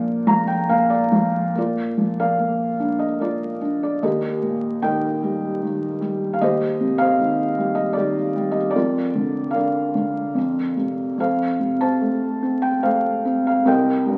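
A felt-muted upright piano opens with a brief fill, then settles after 1.6 seconds into a lyrical passage that carries on to the end at 14.2 seconds. This is a peaceful, tender solo classical piece in three-four time, played with rubato so the beats stretch and give unevenly. The piano sits up front with a dark, boxy, intimate tone, and the soft thump of its action is audible beneath the notes. It moves through gentle harmonies from the home chord toward a C minor seventh, spanning a range from the low bass up to the upper treble. A reverberant recital hall surrounds the instrument, while the crackle of a very old 78 rpm record colours the sound with age and the tuning sits slightly below modern concert pitch. The recording is a short cut from a longer piece.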